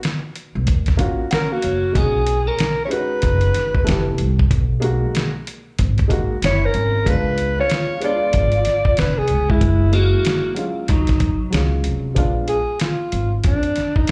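Heard as a live gig through the venue's PA with club reverb, this smoky, mellow jazz-hop cut rides a swung hip hop groove from a gritty, compressed sampler-style drum kit with a thumpy kick and fat snare, up front beside a woody pizzicato upright bass. A dark, slightly detuned upright piano with audible action noise plays a fill from 1.0 to 2.0 seconds and then accompanies through rich extended chords, while a clean, fingered electric guitar adds a second line under slapback echo, chorus and analog delay. A breathy, whispered alto saxophone with vibrato carries the melody through slapback echo and takes a solo from 12.2 seconds to the end.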